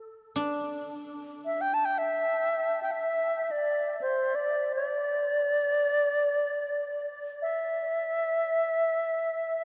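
Drenched in a huge, wet ambient reverb, this haunting fragment of free-time world meditation music floats in open space, tuned to A4 = 439 Hz. A silvery, ringing guzheng, played with fingerpicks, holds a texture around D4 from 0.4 seconds until 8.6 seconds. From 1.5 seconds, an up-front alto flute with a pure, reedy tone, vibrato and soft attack carries the melody between C5 and A5, trailing a delay above the quieter strings.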